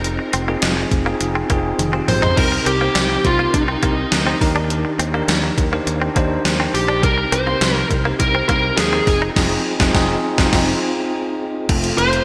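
A bright, digital 1980s-style production bathed in lush hall reverb frames this moody, nostalgic pop excerpt at 103 BPM in 4/4. A gated drum machine with a thumpy kick and gated-reverb snare sits up front beside a dark, distorted bluesy lead guitar that enters at 2.1 seconds. Meanwhile a bell-like tine electric piano, a growly fingered bass and a twangy, compressed clean guitar with subtle chorus in the background carry the Fm7, Cm7 and Ebmaj7 changes, a drum fill arrives near 1.8 seconds, the band hits accents before the close, and a very quiet vintage string machine of violas adds soft sawtooth chords only from 11.7 seconds.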